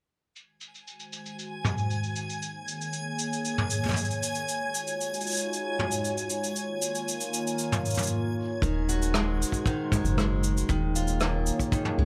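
This delicate, wistful folktronica fragment at 116 BPM opens at 0.4 s with a soft brush kit of cabasa, rim click and muffled toms, its top rolled off. A reversed, bright granular texture and a warbling, lo-fi tape-like pad with chorus soon join, while filter sweeps move across the drums and pad over chords such as Ab7/Eb, Bbm7/Eb and Ebm11. At 8.6 s, picked steel-string acoustic guitar arpeggios with delay and plate reverb arrive alongside a round, deep analog bass and a tight kick. The guitar and bass sit up front and the kick sits mid-forward, all in a moderately reverberant room.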